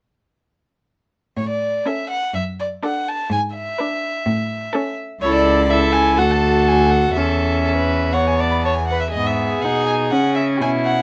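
Spirited and graceful, this quick classical-period movement for string quartet moves at 123 BPM in 4/4 with a rubato feel, set in A major and cut from a longer piece. The first violin carries the melody from 1.4 seconds, sitting up front with an airy bow, a nasal, reedy gut-string tone and a close presence, while the cello enters at the same moment with a rich bass line, also up front. At 1.9 seconds the second violin adds a second line colored by light vibrato, and the viola fills in the accompaniment in the middle register. All four players use period-style bowing on gut strings, and a light reverb surrounds the ensemble. The harmony travels from A through D/F# and E7/G# before turning toward G#m and closing on C#m at 10.1 seconds.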